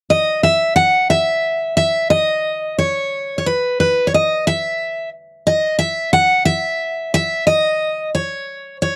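A picked steel-string acoustic guitar carries the melody in this intimate, tender folk excerpt, sitting up front with a bright, full-bodied jumbo tone and audible finger squeak. It moves at 90 BPM in a straight 4/4, playing between B4 and F#5 from 0.1 seconds on and tuned to A4 = 439 Hz. The close, dry 1970s-style studio sound carries just a light touch of reverb.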